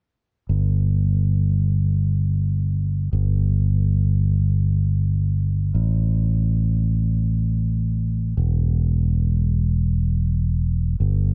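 The recording sounds dry and close, with little reverb around a single electric bass placed up front. This is a short folk fragment in free time, tuned slightly below standard pitch at A4 = 439 Hz, and it carries a warm, anthemic mood despite its spare setup. The fingered electric bass enters at 0.5 seconds and plays until 11.3 seconds, holding the low register between E1 and A1. Its tone is warm, punchy, direct and amped. With the bass as the sole voice, the piece feels like a bold, open-hearted statement pared down to its foundation.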